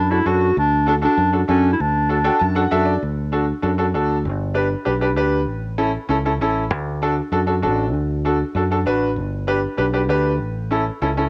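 A breathy clarinet with vibrato and scooped notes carries a jazz-style solo melody until 2.7 seconds, over a bright, woody upright piano that adds a fill at 2.1 seconds and a round fingered electric bass, giving this joyful, danceable cumbia at 195 BPM in D major the intimate, small-room character of a home cassette recording.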